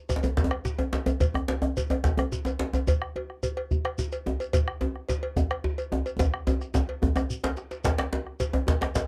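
Set in 12/8, this festive, powerful West African drum ensemble piece is cut from a longer performance and captured in a dry, close 1970s-style studio sound with light reverb. A round bombo sits up front as the loudest voice beside a deep djembe with metal rattles, while a second, tight and cracking djembe, a metallic cowbell and a grainy, saturated shekere fill out the ensemble. A drum fill runs from 6.2 to 7.9 seconds, leading into a brief new section that closes by 9.1 seconds.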